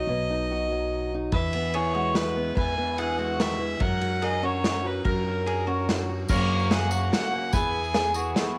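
Indie folk in a nostalgic, uplifting 3/4 at 145 BPM, this home cassette recording opens with a bright, nasal fiddle carrying the melody over fingerpicked boxy archtop guitar and woody pizzicato upright bass, adds round mandolin arpeggios and an unplugged drum kit with dark cymbals and bundle sticks at 1.3 seconds, then builds at 6.3 seconds with a second picked archtop guitar, a very quiet chamber string section playing soft-attack sustained chords, and jingly tambourine, the fiddle carrying tape echo and a cassette grain over light reverb as the chords move from B through E and F#.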